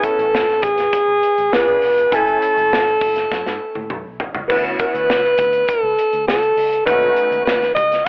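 Polished 1980s jazz-funk pop with a glossy, breezy mood at 101 BPM, cut from a longer piece, where a breathy, up-front alto saxophone with scooped notes carries the melody through a cassette-tape haze over clear, short-sustain grand piano chords with ensemble chorus, a punchy, mid-forward studio drum kit that plays a fill from 3.3 to 4.5 seconds, and a dark, round, foam-muted fingered electric bass, all heard in a small booth with a lo-fi, telephone-like home-cassette sound as the harmony moves from Amaj7 toward Dmaj13 and B7.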